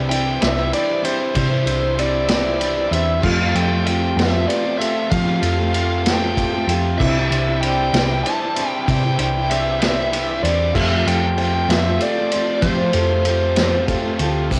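A cassette-worn home recording with moderate spring reverb carries this nostalgic, open-road folk and heartland rock excerpt in 6/8 at 64 BPM, where a dark, distorted lead guitar sings a bluesy melody over a punchy hollow-body electric bass, a gritty vintage drum kit with dark cymbals, a full-bodied jumbo acoustic guitar with finger squeak, a biting double-tracked overdriven riff guitar in the background, a very quiet reedy tonewheel organ on slow rotary holding chords, and a very quiet woody upright piano whose fill closes the passage at 13.6 seconds, all circling between Cadd9 and Fadd9.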